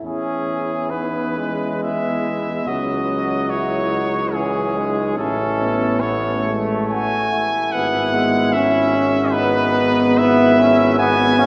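In a rubato 3/4 at 62-78 BPM, this tender, hymn-like classical brass band excerpt in E major sets a bright, up-front cornet melody with vibrato over a mellow, distant flugelhorn second line, brilliant vintage trombone accompaniment joined by dark, close-miked euphonium accompaniment from 0.1 s, and a roomy, distant tuba bass with vibrato, all heard from further back in a cathedral reverb as the chords move from E through C#m and Amaj7 to E/G#.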